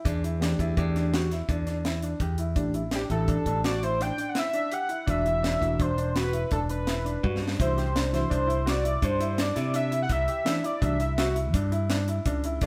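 Tense and intricate, this progressive instrumental excerpt moves in a straight 7/4, with a tight funk drum kit (its snare tuned high) and a growly picked electric bass sitting up front from the start. A grand piano with short sustain plays arpeggios while a clean tine electric piano adds accompaniment, the band sounding as if it plays live in a stone room with moderate reverb. At 3.0 seconds a bold, nasal, octave-doubled lead with chorus and vibrato takes the melody, and a drum fill at 7.2 seconds leads into a new section on a Cadd9 chord.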